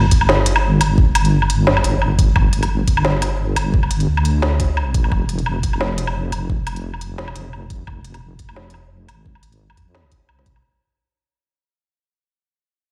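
A deep, dark wobble bass opens the clip at 0.0 seconds, its detuned sawtooth and sine tones sitting up front with a chorus effect as it moves between F1 and F2. This is spacious, cinematic half-time drum and bass at 174 BPM in 4/4, with a 56% swing on the sixteenths. An electronic kick drum enters at 0.1 seconds with a knocking, tape-warm thump. An organic-sounding electronic drum kit joins at the same moment, adding a woody snare, crisp hi-hats and woodblock, placed up front and re-recorded in a large room. The mix carries light reverb and the echo of a stone room, as though played through a big sound system in a bare space. The whole passage fades out across its length, and it is cut from a longer piece.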